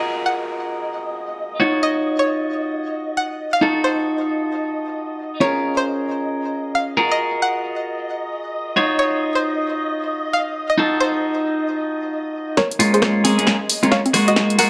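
UK two-step garage at 134 BPM in Bb minor, moody and bouncy with a swung 16th-note feel. A brief electronic downlifter opens the excerpt while a nasal, string-like resonator pluck carries the melody through chorus and delay, a bright, clean electric guitar plays low-pass-filtered stabs up front, and a silky, warbling string machine holds sustained chords under ensemble chorus and sidechain pumping, with a filter sweep running on it until 12.6 seconds, all over Gbmaj9, Ebm9, F7b9 and Bbm7 chords in a moderate digital plate reverb. At 12.6 seconds the drums arrive for a build-up and fill, with a punchy, overdriven analog drum machine playing congas, hi-hat, rim click and snare up front over a tight, tape-warm electronic kick in the background, as a filter sweep moves across the pluck.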